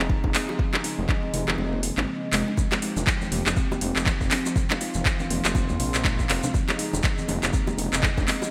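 A swung sixteenth-note groove in four drives this afro house cut, built on an overdriven electronic kick and an up-front drum kit of handclaps and metallic hi-hats, set in small room ambience and gated reverb. The kick drops out from 1.6 to 2.6 seconds. At 2.6 seconds, very quiet low-tuned congas with a ringing tone enter together with a grainy tube shaker, while tight, high-tuned bongos played with soft hands sit low in the mix from the start. Underneath, a dark detuned saw bass rumbles with beating unison tones and tube saturation, pumping against the beat. A woody, hollow-sounding kalimba plucks mellow arpeggios through a digital delay, and a smooth, warbling vintage analog pad holds sustained chords in the background with chorus, both also pumping with sidechain. The harmony moves from Dbadd9/F to F5 and back, and the bright 1980s-style digital production with light reverb gives the piece a driving, warm lift.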